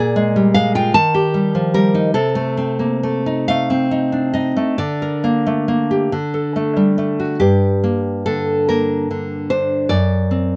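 In a slow, rubato 6/8 moving at roughly 43-52 BPM in dotted quarters, this romantic G minor piece for solo classical guitar unfolds with a melancholic, intimate mood. A single fingerpicked nylon-string guitar carries everything, ranging from F#2 up to A5, its tone full-bodied and deep, placed up front in the sound. The harmony drifts from Bb7 through Eb and a diminished chord over C before settling onto G minor over D and then D. At 7.4 seconds a new section arrives on G minor, turning toward D7 over F# by 9.9 seconds as this fragment of a longer piece breaks off at 10.6 seconds. Close, detailed microphones and very little reverb give the recording a dry, near-at-hand presence.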